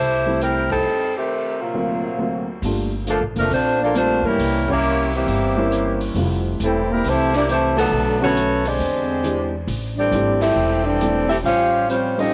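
A swung 4/4 pulse at 136 BPM drives this brassy big band swing excerpt in F major, carried by a pizzicato upright bass with a woody, thumpy tone and a vintage drum kit whose dark cymbals, punchy kick and medium-tuned snare carry a gritty, sampled edge. Up front, a mellow saxophone section states the melody with vibrato and a soft, tight attack. A baby grand piano comps extended jazz chords, opening on a rootless Fmaj9, its natural tone coloured by cassette tape. A close-miked trombone section enters at 1.6 seconds as a second line, its warm ensemble sound touched with light vibrato and the same tape colour. The band punches out accents through the passage, with a break from 0.9 seconds, and altered dominant chords keep the harmony restless, all set in a small room with moderate spring reverb and the hazy feel of a home cassette recording.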